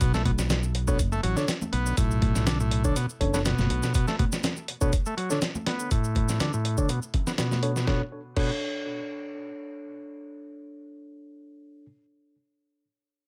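Breakbeat in B minor at 122 BPM with a swaggering, raw swing, built on a gritty, thumpy sampler-style drum kit up front, a buzzy combo organ riff under a filter sweep and digital delay, fingered electric bass only until 3.8 s, a tape-warm shaker, very quiet ringing congas, and worn, slightly out-of-tune tine electric piano stabs with 12-bit sampler grit and delay that carry on alone after the rest stops near 8.5 s, all in light reverb as the chord moves from Bm7 to a rootless Bm9 at 7.9 s.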